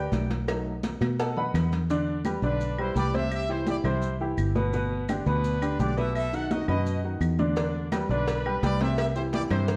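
A woody, polished upright piano sits up front and leads the opening of this driving, passionate salsa excerpt in E minor at 169 BPM, with a dark, round, foam-muted electric bass beneath it over Em7, C, G and B7 changes. Thick-skinned, high-tuned congas, grainy maracas and dry, woody claves stay in the background, while a tight cowbell drops out at 1.9 s and returns at 7.6 s. From 2.4 s a bright, tight trumpet section with light vibrato carries the melody, all bathed in a moderate large-studio reverb and a worn, warbling cassette-tape pitch drift.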